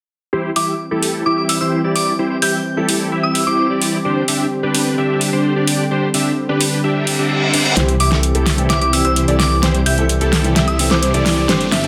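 A straight pulse from an up-front, layered pop drum kit with a fat snare and metallic hats drives this euphoric, anthemic festival progressive house passage, cut from a longer piece. A huge, detuned supersaw riff sits at the front over a lush pad's sustained chords in the background, while a soft FM bell adds a pure, warbling melody. From 7.0 s a reverse cymbal and riser lead into a build-up at 7.8 s, where a drum fill and filter sweeps on the supersaw and a punchy plucky lead's arpeggios arrive alongside a dark, mellow baby grand piano and a thick, menacing detuned saw bass, all inside a dense, heavily limited modern master.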